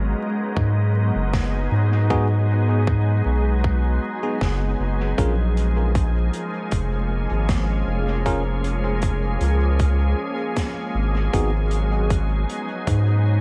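Ambient dub with a deep, spacious mood, riding a gently swung groove as chords move from G#m7 to A#m7 and back at 11.3 seconds. A soft, organ-like pad with ensemble chorus and built-in reverb holds bright, pure chords over a round analog bass with tube saturation, dark and up front, while a tight, overdriven electronic kick enters at 0.6 seconds and a distant soft-mallet kit adds hi-hat and a fat snare through dub echo. A bell-like tine electric piano places clean stabs with dub echo in the background, and vinyl crackle and small-room ambience color this excerpt from a longer piece.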